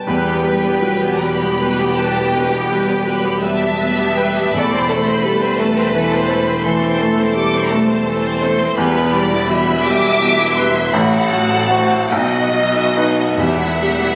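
A clear, up-front baby grand piano and a lush, smooth violin section open this brooding, passionate passage from a romantic movement for piano and orchestra, sharing the melody in a flexible, rubato 12/8. A soft-edged, distant second violin line, bright and focused violas, very quiet, rich cellos and rich, distant double basses fill in beneath them, while timpani struck with medium mallets sound in the background at 4.5 s and again at 13.4 s. The ensemble sits in a moderate scoring-stage reverb, heard as if captured on a phone in the room, so the top end is dulled.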